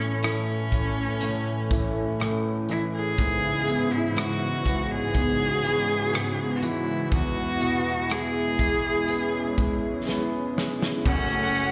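Emotional and hopeful, this slow pop ballad in A major moves at 61 BPM as a rich, bowed cello carries the melody up front with vibrato, plate reverb and a slapback echo. It is set over a clear concert grand piano with deep bass and long sustain, a smooth, detuned sawtooth pad with chorus holding sustained chords, and a full-bodied fingerpicked steel-string acoustic guitar playing arpeggios in the background through echo and delay. A loose indie drum kit with a fat snare and rolled-off top plays throughout with a fill from 10.1 to 11.1 seconds, and a lush studio violin section enters at 11.1 seconds on the move to F#m, all heard as a live gig through the venue's PA in a recital hall.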